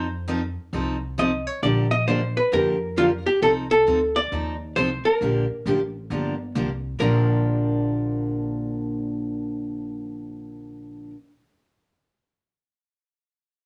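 A clean, dark archtop guitar, electric and hollow-bodied, sits up front and carries the picked melody, opening with a solo passage that runs to 3.4 seconds. This is a down-home, swinging slice of western swing country, taken from a longer piece, moving at 134 BPM in 4/4 with a loose swing on the eighth notes, in B-flat major. Beside it, a bright, full-bodied dreadnought steel-string acoustic guitar, also up front, plays picked accompaniment, with finger squeaks audible on its strings. An upright bass with steel strings anchors the low end with warm, woody pizzicato notes. The harmony moves between F7 and Bb6, and a moderate club reverb gives the trio the feel of a club room.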